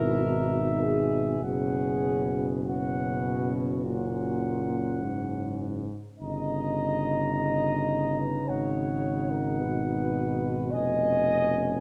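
A serene, hymn-like classical passage for brass band opens with all five parts sounding together: a warm, distant flugelhorn carrying the tender melody high above a mellow French horn section singing the second line. Beneath them, a bright, close-miked trombone section with light vibrato and a euphonium with its own vibrato fill out the accompaniment in the background, while a roomy tuba anchors the bass. The tempo is slow, between 49 and 56 BPM in 4/4, and the pulse breathes freely with rubato. The harmony moves gently from E/G# through F#sus4 and F# to D#7/G and G#m7, arriving at C#7/E# near 10.7 seconds. A moderate recital hall reverb and a dark production give the whole 11.8-second fragment, cut from a longer piece, a soft, enveloping glow.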